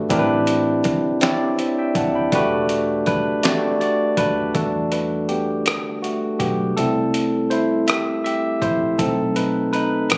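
Recorded on a phone in a room with club reverb and compression, this yearning, sultry slow six-eight R&B excerpt in E minor at 54 BPM pairs a bright, barky tine electric piano, up front through a combo amp, with a dark, round, foam-muted fingered electric bass and a gritty, tape-toned sampler-style soul kit of thumpy kick, fat snare, rim click and hi-hat, as the piano moves from accompaniment into a solo at 4.5 seconds over Am11, Em11, C6 and B7b9 chords.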